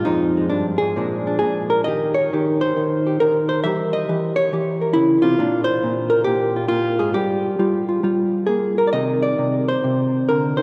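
Loosely swung eighths with a rubato give and take carry this relaxed, swinging solo jazz fragment, cut from a longer piece, where a dark, clean, compressed electric hollow-body guitar, fingered and up front, moves through changes such as Fm7, Bb7, Edim7 and Cm7 inside the long, wet cathedral reverb of a church or concert hall.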